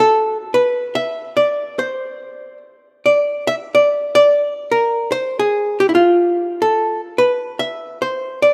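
A lone archtop guitar opens this brief jazz fragment, heard by itself from 0.0 to 8.5 seconds. The mood is playful and relaxed, with a swung eighth-note feel in 4/4 that gives the line an easy lilt. The hollow-body instrument is picked and played clean, its electric tone dark and sitting up front, miked and amplified. The melody moves between E4 and E5, staying in a comfortable middle register. A moderate plate reverb adds a lingering tail, while the overall sound carries the rough, unpolished character of a home demo mix.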